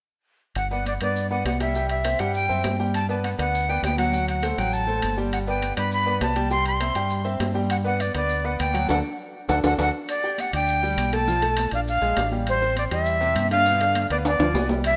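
A rough home-demo mix bathed in a lush hall reverb frames this festive, danceable salsa excerpt at 202 BPM in G major, with a breathy, chiffy, vibrato-laden jazz flute carrying the melody up front over a dark, round, punchy fingered electric bass. Brilliant grand piano chords with long sustain fill the middle, while ringing metal-shell timbales lead the percussion, and high-tuned congas and grainy maracas sit in the background. A band accent arrives at 8.9 seconds with a drum fill following at 9.2 seconds, a new section begins at 10.1 seconds, and a second fill comes at 14.3 seconds.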